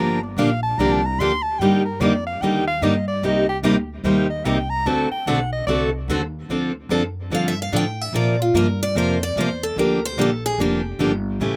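A soft-attack soprano saxophone carries the opening solo with light vibrato, a subtone and a slapback echo, playing until 5.8 s in this bittersweet, virtuosic stretch of acoustic string swing at 147 BPM. A boxy parlour-style steel-string guitar provides picked accompaniment throughout, over a woody, thumpy pizzicato upright bass on gut strings. After the music settles into D minor, a second steel-string guitar with bright, fresh strings takes a picked solo from 7.3 s, all in a dry outdoor sound.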